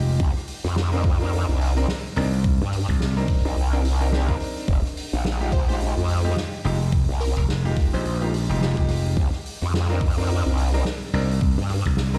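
A swung 107 BPM glitch hop groove in 4/4 drives this funky, playful excerpt, where a knocking electronic kick and a distant, roomy soft-mallet kit of hi-hat, rim click and snare sit under a growling, chorused, tube-saturated bass and a punchy, overdriven slap bass, while bright baby grand piano stabs carry 12-bit sampler grit, sidechain pumping and delay over Cm9 and Fm9 chords, a mellow detuned unison lead with tape character and delay surfaces in the background from 5.5 to 8.3 seconds, and a large studio reverb makes the whole mix sound like it's playing through a big sound system in a bare room.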